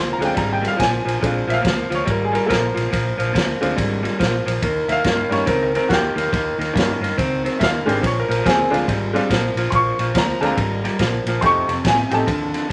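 Electric blues shuffle with a rollicking, swaggering swing, cut from a longer piece, where a bright, woody upright piano comps over a slightly broken-up, lo-fi electric guitar riff through a small old amp, a dark, foam-muted fingered electric bass rounds out the low end, and a punchy, up-front big-band drum kit of kick, snare and ride joins at 0.2 seconds, all in a reverberant club sound over Bb9, Eb9 and F9 chords.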